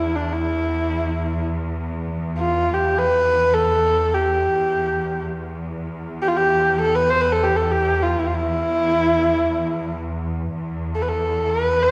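A single kamancheh carries the melody up front, its tone intimate and close, with a soft attack, an airy bow and vibrato, moving between D4 and D5. Beneath it, a rich symphonic cello section holds a low E2 drone, smooth, even and lush, bowed with its own vibrato. The piece belongs to the Turkish makam tradition and unfolds in free time, giving the line a longing, soulful character. Both parts sound together from the opening through to 11.9 seconds, bathed in the lingering reverb of a church or concert hall. This is a short passage cut from a longer piece.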